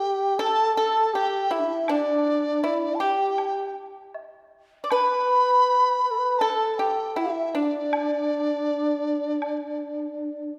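Chinese traditional chamber music in D zhi mode, this pastoral, festive passage is cut from a longer piece and moves at 80 BPM in a straight 4/4. A large dizi carries the melody up front with a hollow, pure, buzzing-membrane tone, vibrato and crisp attacks, while a breathy, end-blown xiao with tongued notes and a fingerpicked, percussive pipa play second lines beneath it. A close woodblock sits in the background from 0.4 to 9.6 seconds, and a concert-hall reverb gives the whole a spacious sheen.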